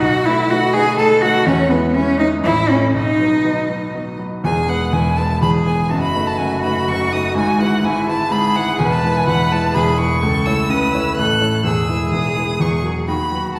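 A quick, spirited classical-period movement for piano trio in E major, this graceful passage moves at 125 BPM in a straight 3/4 and is cut from a longer piece. A single bowed violin carries the melody from B4 up to F#6 with a focused, vibrato-laden tone and a smooth top. Below it, a single bowed cello sits up front on a second line between B3 and B4, its voice rich with vibrato. A baby grand piano supplies the accompaniment across a broad span from E1 to C#5, sounding present and polished. The harmony circles through B7, E, A and B before a new section at 4.4 seconds leans on inversions such as B7/F# and E/G# and closes on F#7/E and B/D#. The trio is heard from further back in a scoring stage, wrapped in a wet reverb with a 1.6-second decay.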